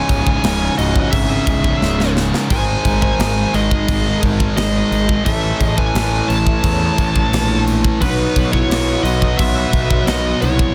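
A dense, heavily limited modern master in a small room gives this dark, relentless heavy metal excerpt a compressed, crowded sound at 87 BPM in 4/4, with a straight feel in C# minor. Up front, a tight metal drum kit with bright cymbals, a medium-tuned snare and a tight kick plays crash, kick and snare, adding a drum fill from 1.8 to 2.5 s. Beneath it, a growly, fuzz-soaked picked electric bass digs deep, while two distorted, high-gain electric guitars pick a low riff in the background. A dark, high-gain lead guitar carries the melody through distortion and tape echo, and a second distorted lead guitar plays a lower supporting line further back. A very quiet, lush pad of detuned sawtooth and square-wave unison with chorus and a soft attack holds sustained chords as the harmony moves from C#m to G#, A and B5.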